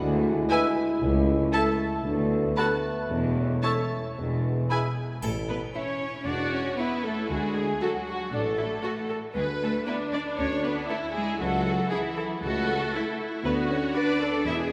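A playful, whimsical cinematic film cue in A major, cut from a longer piece, moving at a straight 117 BPM in 4/4 with a magical, mischievous air. The opening bars pile up a full orchestral texture: a dark, distant French horn section holds sustained chords while the flute, oboe and clarinet add brief second lines, the flute pure and hollow, the oboe soft-attacked, the clarinet shadowy and roomy in the background. Beneath them, a lush string body carries on throughout, with a focused, close cello section and a smooth double bass section joined by a tuba with a light vibrato. On top, a dark studio violin section sings the melody with expressive vibrato and portamento, shadowed by a second, more distant symphonic violin section and a close, focused viola accompaniment. After the winds and horns drop out near 5.0 seconds, a triangle rings briefly at 5.2 seconds as the strings and low brass continue into the second section, which moves through A, D and E7/D before settling on Dmaj7. 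A wet church reverb with a long 3.0-second tail gives the whole ensemble the bloom of a concert hall.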